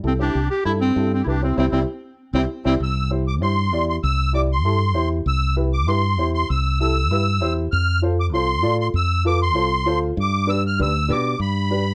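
In a lightly reverberant room, this joyful, sunny latin excerpt at 195 BPM in C major sets a dark, woody upright piano and a round, up-front fingered electric bass beneath a soft-attack clarinet with light vibrato and plate reverb, which carries the jazz-style tune through a band accent from 1.6 seconds until it stops at 2.7 seconds, when the reedy, shimmering musette accordion, heard throughout as a second line, takes a solo from 2.8 seconds to the end over chords moving from C to F to G.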